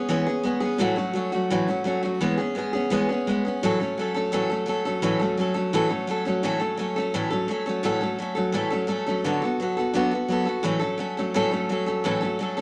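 A bright, picked steel-string acoustic guitar plays alone and up front with audible finger squeak and an auditorium sound, driving this rowdy, rollicking rock excerpt at 171 BPM in A major through E6, A6 and D6 chords, settling into a new section at 3.6 seconds inside a moderate studio reverb.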